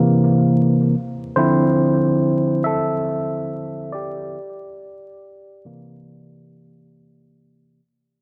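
A bright, barky tine electric piano plays alone and up front across this short nostalgic, reflective lo-fi hip hop fragment at 70 BPM with a 16th-note swing, moving from C7 to Dm9 to C9 through cassette tape colouring, a low-pass filter sweep and analog delay, set in light reverb over vinyl crackle as the whole 7.8-second passage fades out.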